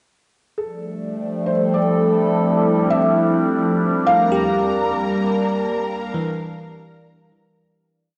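In a straight three-four lilt, this spacious, reflective ambient piece opens at 0.6 seconds on a soft, felt-muted upright piano tracing arching motifs with audible action noise and tape echo, resting on a nostalgic, warbling tape-like pad and a resonant drone of moving overtones, until a lush, vibrato-rich violin section holding a high note and a bell-like tine electric piano, its two unequal loops drifting against each other, join at 4.1 and 4.3 seconds, the whole home-recorded cassette sound steeped in wet spring reverb.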